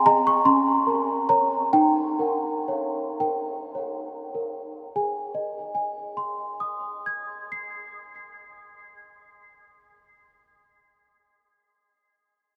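Tender and dreamy, this classical lullaby is a short passage cut from a longer piece, played entirely by a small celesta. The lone instrument carries the whole tune from 0.0 to 11.0 seconds, moving between the middle and upper registers in a gentle 6/8 sway. Its tone is bell-like and delicate, with the mellow give of soft felt hammers, and it sits close and up front, touched by a diffuse ambient delay. The pace eases during the first 5.0 seconds, drifting through a Bbm/Db chord and an Eb7 before settling on Ab as a new section begins at 5.0 seconds. Around the celesta, a huge ambient reverb soaks the mix, leaving long, hazy tails hanging in the air.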